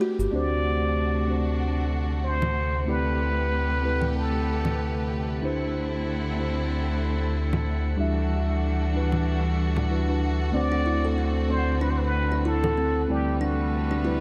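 Organic downtempo in D mixolydian at 94 BPM with a swung 16th feel and an earthy, warm mood, where a smooth, gliding synth bass sits up front beneath overdriven electronic cabasa and congas, muted felt-like synth keys with a warbling vintage chorus and tape echo, a lush, distant bowed string section and a faint glassy harmonics texture drifting in the background, while a jazz-style plunger-muted trumpet with wah-wah and tape echo carries the melody before returning at 10.5 seconds, joined at 10.7 seconds by woody, ringing kalimba arpeggios.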